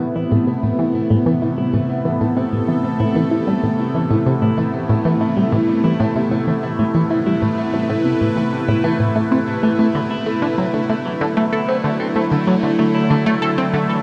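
Cosmic and expansive, this ambient fragment cut from a longer piece sets an evolving, morphing wavetable pad of sustained chords with phaser and built-in reverb beside a tight, driving sequenced synth riff of detuned sawtooth plucks with chorus and tape echo, while a bright, twangy clean electric guitar plays picked arpeggios through tape echo as it fades in across the full 14.0 seconds, the harmony moving from Amadd9 to Dadd9 at 9.9 seconds inside a vast, echoing cathedral space.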